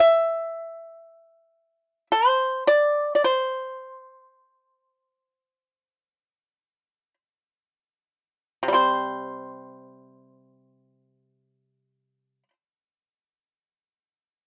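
A dry, close 1970s-style studio sound with light reverb frames this flowing, pastoral excerpt of Chinese traditional solo plucked-string music in free time and C gong mode, where an acoustic pipa played with fingerpicks sits up front with a percussive bite across C3 to E5, slowing down through the first 8.8 seconds before playing on until 12.5 seconds.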